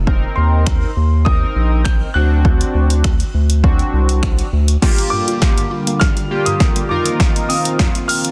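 Dance-pop with an energetic, confident drive, this excerpt opens on a round, deep analog bass and a glossy chorused polysynth, both pumping against a punchy analog drum machine of kick, snare, hi-hat, finger snaps and crash with soft clipping on the snare, while a polished grand piano carries a high melody through delay. The bass stops at 4.8 seconds as a build-up begins, bringing a drum fill, a filter sweep, a shimmering chorused pulse-width pad on sustained chords and a woody mallet-like synth pluck playing arpeggios in the background. The master is dense, heavily limited and nearly dry.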